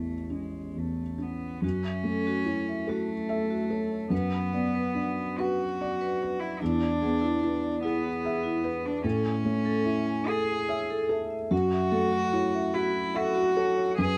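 Neoclassical piano and strings in a reflective, fragile mood, drifting at 73 BPM in a rubato 3/4 with A tuned to 441 Hz. A felt-muted upright piano sits up front with a dark, intimate, mellow tone and audible action noise, while a single bowed cello plays a pure, floating second line sul tasto, close yet somehow distant. At 1.6 s a metallic, ringing vibraphone with medium hard mallets and its motor off enters in the background, spinning arpeggios in a boxy small room with slapback echo as the harmony moves through F#m7, Bm/F#, E7 and Amaj7 under light reverb in this fragment of a longer piece.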